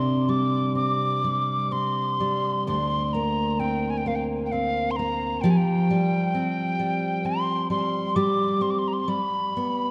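Loosely rubato in 3/4, this mournful, haunting Celtic slow air pairs a breathy, mellow tin whistle carrying the melody with vibrato, a soft attack and a tape echo, over a full-bodied, fingerpicked steel-string dreadnought guitar, both sitting up front for the whole 9.9 seconds. The guitar drifts through open suspended harmonies, Csus2, Bbadd9/D and Fsus2, before settling from Gsus4 onto G at 9.1 seconds. A wet church reverb and a dark, warm production give this fragment of a longer piece a candlelit glow.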